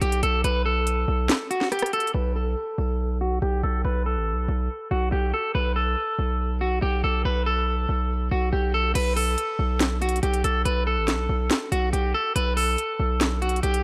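Brooding and eerie, this half-time trap excerpt at 141 BPM pairs a twangy, slightly broken-up electric guitar melody, treated with spring reverb and digital delay and put through a filter sweep from 2.1 to 9.0 seconds, with a heavy, saturated 808-style bass that runs throughout, while a crisp, sharp trap kit of hi-hat, snare, handclaps, rim click and crash plays until 2.1 seconds and returns at 9.0 seconds, all over rootless Gadd9 chords in a dark production.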